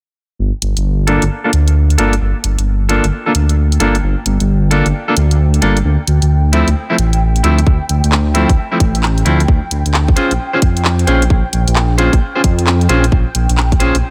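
A dry excerpt of late-night, skippy two-step UK garage at 132 BPM in G minor, where a dark, detuned saw bass rumbles up front with sidechain pumping and a filter sweep beneath silky string-machine chords that sit in the background with phaser, ensemble chorus, the same pumping and their own filter sweep, while a tape-warm garage kit of handclaps and hi-hat skips along, a bright, clean electric guitar picks stabs through a low-pass filter and dub echo, and a tight electronic kick arrives at 7.7 s, the harmony moving from Gm7 to Dm7 to Bbm7.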